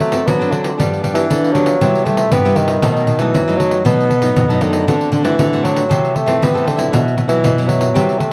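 A solo bassoon with light vibrato sings the melody up front in classical style over a joyful, sunny samba and choro groove at 117 BPM, backed by a crisp, picked cavaquinho in the background, a small, fingerpicked nylon-string guitar comping, a full-bodied nylon-string guitar with bright fresh strings and audible finger squeak carrying the bass, and a jingly, saturated pandeiro played with hard hands close to the front, set in light reverb with a dark production across this 8.3-second excerpt.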